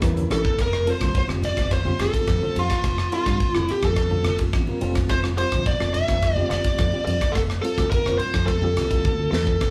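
A bright, reedy electric piano with fast tremolo opens this excerpt of electric jazz fusion at 106 BPM in 4/4, sounding together from the first moment with a round, dark fingered bass, a punchy up-front studio drum kit and a brief, lush bowed string chord. Soft, low-tuned congas sit very quietly beneath. From 0.3 seconds a bluesy overdriven lead guitar, picked and distorted, carries the soaring melody up front. The harmony moves from A7b9 to Fadd9 and Csus4/F in F major, while the kit draws on hi-hat, ride, rim click, snare, kick and toms. A drum fill from 9.1 to 9.6 seconds arrives just before a short return of the smooth strings, and the whole band sounds as if it plays together in one room with light reverb.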